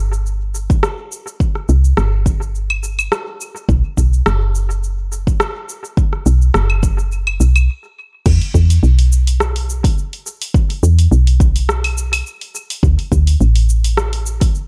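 Organic downtempo with a meditative, mystical mood and a lightly swung 4/4 groove, heard as a section cut from a longer piece and set in an echo-heavy digital space. An up-front, woody FM bass with a soft, round, fast-attack tone and dark decay carries the low end with sidechain pumping, while a deep, layered electronic kick enters at 0.7 seconds. A deep house kit of claves, crash cymbal, shadowy hi-hats, rim click and shaker sits further back in studio ambience and analog delay, and the music stops briefly from 7.7 to 8.3 seconds before moving into a new section.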